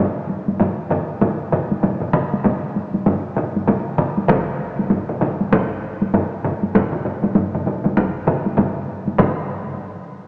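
Driving and powerful, this short cut from a longer piece is Japanese traditional taiko drum ensemble music at 98 BPM in 4/4, with a 60% swing on the sixteenths. A solo taiko drum, struck with heavy sticks and heard close, opens the texture at 0.3 seconds and sits as the most prominent voice. Two ensemble taiko parts join at 0.6 seconds: one compressed and saturated, giving it a dense, gritty edge, the other a small-room drum placed up front. A further ensemble part, also in a small room but set back in the background, enters at 4.3 seconds to thicken the mass of sound. Over all of this hangs a wet church reverb with a long tail, though the overall sound comes across as if heard through a small speaker.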